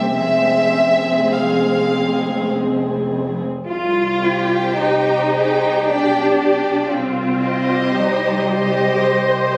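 Captured on a phone in a reverberant stone room and compressed, this excerpt from a longer piece is a slow, melancholic and solemn romantic movement for string orchestra in 3/4, moving with rubato at around 50-57 BPM from F minor into C minor at 3.7 s. Up front, a violin section carries the melody with soft, intimate sul tasto bowing and light vibrato, while a darker second violin line slides expressively with portamento beneath it and a woody viola section fills in the accompaniment. Underneath, a distant cello section sings with expressive vibrato, and a clear, even double bass section anchors the low end.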